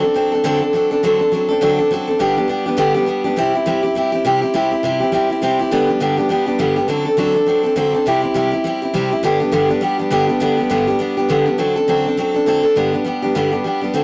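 Rock excerpt at 204 BPM in G major with a swung eighth-note feel, where a lone picked steel-string acoustic guitar, bright and full-bodied with fresh strings, audible finger squeak and an up-front presence, rolls through a rollicking, rowdy run of D7, G and C chords across 14.0 seconds in a rough rehearsal-room sound with saturated warmth and moderate studio reverb.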